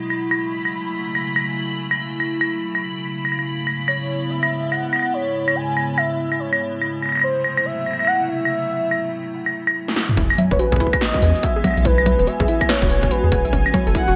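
Playful, intricate IDM in E major at 143 BPM with swung sixteenths, where a crystalline glass pad and a bubbling, resonant stepped-filter texture shimmer over a punchy, up-front analog drum machine of claves, congas, metallic hi-hat, snare and toms. A velvety, gliding synth lead with vibrato enters at 3.9 seconds as the harmony moves from F#m7 through C#m7/G# to Am6. After a drum fill, warbly lo-fi pluck arpeggios, a deep round analog bass and an overdriven electronic kick join at 10.2 seconds as the chords arrive on Eadd9, all in this bright, 1980s-style digital production with plate reverb.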